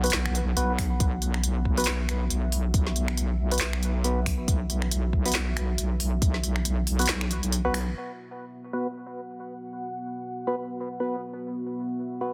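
A brooding, heavy deep dubstep excerpt at 138 BPM in a swung half-time feel opens on a B5 chord with a detuned, dark ambient pad, hollow, nasal organ stabs under a filter sweep and dub echo, an up-front mellow square-wave wobble bass, and a kit of woody snare, smooth filtered hats, finger snaps and handclaps, joined at 0.8 seconds by a deep layered kick that drops out at 7.5 seconds before a band accent at 7.7 seconds, after which only the pad and stabs carry on in a dense, limited mix with light reverb.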